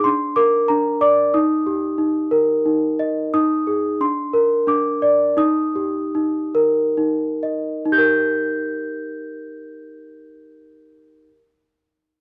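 A 3/4 pulse moves freely in rubato, drifting between 59 and 94 BPM and slowing between 3.3 and 7.9 seconds. This is a sleepy, gentle children's lullaby in Eb major, cut from a longer piece. A solo celesta carries everything from the opening until 11.4 seconds, ranging from D4 up to G6 with a bell-like, sweet tone shaped by hard felt hammers. Placed up front, the instrument sounds delicate and airy, touched by light reverb in a dry, close 1970s-style studio setting. The harmony rests on Bb and Eb, with a brief Ebsus4 at 3.3 seconds before settling back home.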